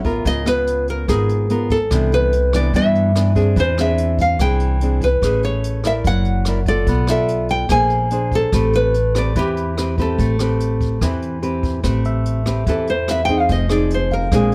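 Over a light reverb, a full-bodied, fingerpicked nylon-string guitar melody and a thumb-plucked nylon-string accompaniment open this smooth, intimate bossa nova in A minor at 145 BPM alongside a woody, thumpy upright bass and a brushed drum kit with a boomy kick and rim click, before a nylon-string guitar takes a solo at 11.8 seconds and a bright, barky electric piano with phaser enters at 12.1 seconds.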